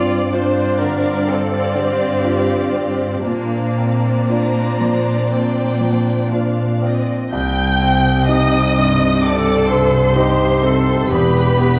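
Worn, warbling old cassette tape and a wet scoring-stage reverb colour this bittersweet, sorrowful fragment of a cinematic film score, which moves freely in a rubato 4/4. A violin section carries the lush, vibrato-laden melody high above a second violin line, while a distant solo cello sings expressively in the background with portamento until 6.3 s, and a bright, brilliant concert grand piano and a smooth viola section supply accompaniment. Beneath them a rich, close cello section holds the bass, joined at 7.3 s by a bowed double bass section as the harmony moves from G7sus4 and Bbadd9 to C minor.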